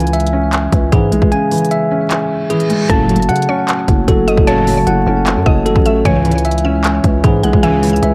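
A half-time 152 BPM trap hip hop groove in F# minor sets an eerie, dark mood, with a crisp, hard-clipped trap drum kit of kick, hi-hat and handclaps up front beside a growling, buzzy 808-style bass, while a soft, felt-muted upright piano with audible action noise and a bell-like tine electric piano playing filtered, delayed arpeggios carry the opening until the kick drops out at 1.3 seconds and a brief reverse cymbal leads into a fuller passage at 2.9 seconds, where a fat, bold polysynth stabs, a woody mallet-like synth pluck adds a second line and a deep, moody analog pad enters very quietly at 3.4 seconds, all wrapped in light reverb and vinyl crackle.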